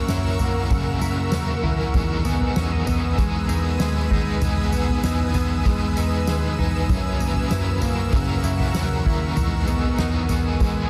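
Blissful and floating, this short dream pop excerpt drifts at 97 BPM in a straight 4/4, set in E lydian and moving between F#7 and Emaj7 chords. A semi-hollow electric guitar carries the arpeggios with a clean, compressed, fingered tone, touched by subtle chorus and delay. Alongside it, a biting overdriven guitar, double-tracked and picked, supplies accompaniment colored by tremolo and light chorus, while a shimmering ambient pad holds high sustained chords with an ethereal, granular, octave-up glow and its own reverb. A vintage muted picked electric bass with a dark, round, foam-muted sound and a soft-mallet drum kit of boomy kick, fat snare, tambourine and toms in a big room both enter at 0.1 seconds. A lush hall reverb wraps the ensemble, and the dense, heavily limited modern master keeps the mix full.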